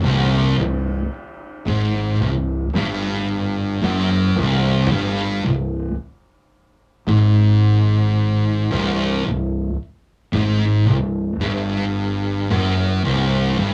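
Heavy and brooding, this slow metal excerpt crawls at 55 BPM in 4/4, cut from a longer piece and tuned slightly sharp to A4 = 445 Hz. Two dark, fuzz-soaked electric guitars play a low riff throughout the 13.7 seconds, one thick and up front, the other sitting in the background, over a C5 chord. Beneath them, a growling fingered electric bass adds bright, overdriven grit, all captured with light reverb in a rough rehearsal-room sound.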